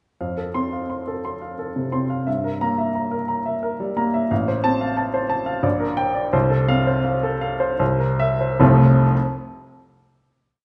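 A warm baby grand piano opens this short, complete romantic character piece in F major, playing alone in a rubato 3/4 at 70-92 BPM with broad broken chords and a second figure in the upper hand, its present, up-front tone set in the wet reverb of a large studio heard from further back, as the passionate mood slows from 3.3 s until the final F chord arrives at 8.6 s.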